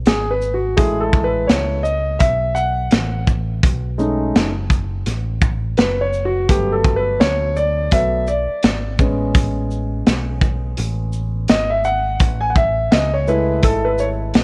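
A round, dark picked electric bass opens this cool, smoky jazz-hop excerpt, joined almost at once by a crunchy, saturated breakbeat kit of tight kick, snare, hi-hat and shaker, set up front in a small room with its top rolled off and a loose swing in the groove. A warm concert grand piano carries the lead throughout, moving through rich chords such as F#m9/A, B13 and Gmaj7 before settling on Amaj9 and Amaj13. Light reverb and a worn cassette-tape warble with pitch drift colour the whole recording.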